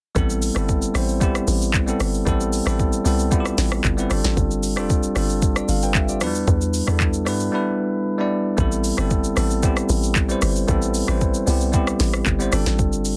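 A bell-like tine electric piano opens this soulful, late-night amapiano excerpt at 0.1 s, its clean, bright chords sitting up front and moving through lush minor and suspended harmonies. A hollow, bouncy log drum bass with a fast attack and mellow decay joins almost at once, alongside a produced R&B kit of soft kick, sharp snare, smooth hats, handclaps, rim clicks and shaker, the kit carrying a gritty overdrive. A brief break arrives at 7.5 s before the groove resumes at 8.6 s, all within a dry, dense and heavily limited modern mix.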